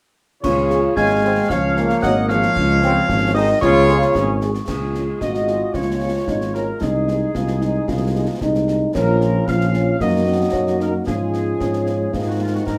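Spirited and proud, this military-style march for wind band strides along at 113 BPM in 2/4 in Db major. A dark, smooth-topped trumpet section carries the melody over an up-front dark tuba bass and a clear, punchy euphonium second line, while a mellow trombone section holds sustained chords and a loose, vibrato-tinged French horn section joins from 0.7 seconds. A distant, roomy woodwind section sits in the background, and a soft, bell-like glockenspiel played with rubber mallets rings until 4.4 seconds. Clash cymbals, concert bass drum and snare drum sound from a small room, all wrapped in a wet studio reverb, in this excerpt cut from a longer piece.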